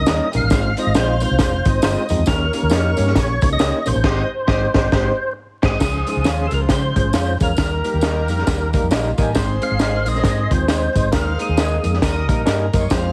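A heavily compressed, radio-like sound with vinyl crackle and a small room ambience frames this joyful, danceable excerpt of uptempo 1960s-style soul, swinging at 135 BPM in Ab major. A fat, lightly overdriven tonewheel organ with percussive third-harmonic attack, chorus vibrato and a slow rotary speaker carries the melody until 12.0 s, while a worn, slightly out-of-tune tine electric piano fills in the accompaniment through its built-in speakers. Underneath, a dark, round, foam-muted fingered bass sits beside a crunchy, saturated breakbeat kit that is up front, with a punchy kick, high-tuned snare and dark cymbals. A slightly broken-up, lo-fi electric guitar adds picked stabs, and a jingly tambourine sits in the background. Gut-toned, reedy studio strings play a second line from the start, joined at 4.0 s by a tight vintage horn section with slapback echo, as the band hits an accent before the harmony moves from Abmaj7 through Db and Eb toward an Ebsus4 resolving to Eb.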